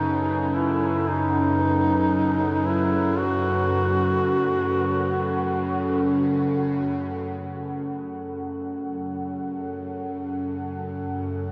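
Dark ambient drone in free time and F# dorian, desolate and unsettling, where a warm duduk with scooped notes and vibrato sings a short folk-style solo through tape echo until 6.3 seconds. Beneath it sit a deep, wave-folded pad, a tense, bright bowed-like drone with phaser, a barely audible grand piano arpeggiating and an airy wind-like noise texture; the piano and texture end at 7.4 seconds, leaving pad and drone to sustain in a wet cathedral reverb until 11.5 seconds in this fragment cut from a longer piece.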